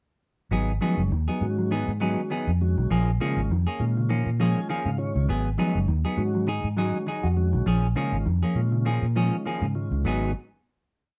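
A round, amped fingered electric bass sits up front with a dark, syncopated riff, driving this short, hypnotic afrobeat groove over a swung feel that alternates between G#m7 and A#m7. A picked clean electric guitar strums upper chord shapes up front, while a mellow, fingered electric guitar repeats a background arpeggio ostinato through slapback echo. A soft, flute-like tonewheel organ on slow rotary speaker adds syncopated quartal stabs and a fill at 4.1 s, all in light reverb, before the piece settles on a final G#m7 at 10.1 s.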